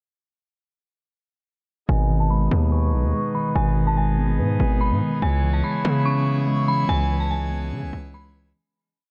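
At 1.9 seconds, four parts enter together in a tense, menacing drill track at 144 BPM, in a half-time feel in G# minor. A distorted 808-style bass sits up front with long, heavy sub-bass notes and pitch slides. Above it, an eerie, inharmonic, detuned FM synth bell loops a melody like a sample, coloured by chorus, phaser, a low-pass filter and dub echo. A mellow tine electric piano, heard as if through built-in speakers, repeats a rising and falling eighth-note arpeggio, and a full pipe organ with mixtures holds a majestic, brilliant pad of sustained chords quietly underneath. The harmony moves from G#m to C#m7 at 5.2 seconds while a filter sweep runs through the whole breakdown, and the dry, echo-heavy mix fades out from 6.9 seconds to the end.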